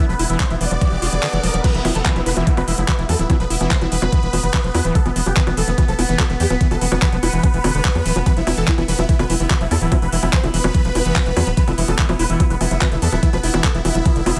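Psychedelic trance at 145 BPM in a straight 4/4, this intense, trippy cut from a longer piece opens on a rising effect and a brief kick dropout at 1.2 seconds before the drop lands at 1.6 seconds. A huge, thick supersaw carries the melody with detuned unison layers, a sub octave and vibrato, treated with phaser, tape echo and sidechain pumping. Beneath it, a screaming acid riff squelches and snarls through a resonant filter sweep with distortion, chorus and echo, while a slow-attack drone with moving overtones holds sustained chords in its own reverb and chorus. The round analog bass sits deep and dark up front, and the knocking electronic kick, tape-tinged and layered, drives hard over a garage kit of bongos, handclaps, crash and metallic hats in small-room ambience. A riser and downlifter sit in the background early on, all wrapped in a digital ambience.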